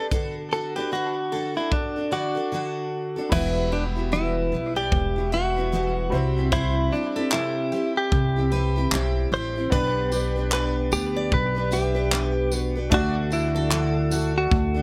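Lightly reverberant and intimate, this reflective, tender acoustic pop excerpt in E minor moves at 75 BPM with a swung 16th feel, as an up-front, compressed clean electric guitar carries the melody through tape echo over a full-bodied, double-tracked steel-string acoustic guitar accompaniment, a second picked acoustic guitar spinning quiet arpeggios, and a studio drum kit with a punchy kick, bright crash cymbal, handclaps and tambourine; after a short break from 2.5 to 3.3 seconds, a woody, thumpy pizzicato upright bass sitting up front and a brilliant, slightly detuned upright piano with audible action noise, set in the background, join from 3.3 seconds.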